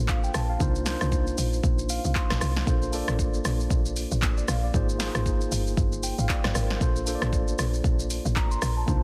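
A dry, dense and heavily limited mix opens this relaxed amapiano excerpt at 116 BPM in Bb major, its 16ths swung, with chords moving through Bbmaj9, Cm11 and Ab69. A mellow, clean tine electric piano heard through its built-in speakers carries the harmony and plays a short fill from 1.6 to 2.7 seconds, while a woody FM log drum bass with a noise layer gives punchy, fast-attack notes that decay. Up front, a layered electronic deep house kit re-recorded in a small room pairs a deep kick and a punchy, softly clipped snare with handclaps, hi-hat, rim click and shaker.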